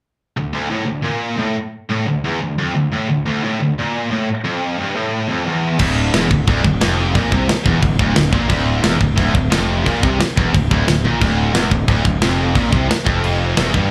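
Heavy metal in D minor at 177 BPM, dark and heavy, cut from a longer piece and heard as a live club gig through the venue's PA with light reverb. Two bright, high-gain guitars open the riff from 0.4 seconds, set back in the mix with slapback echo. At 5.8 seconds a tight, double-tracked guitar joins alongside a growly fuzz-driven fingered bass and an up-front drum kit with a tight kick and medium-tuned snare, which plays a fill at 11.0 seconds.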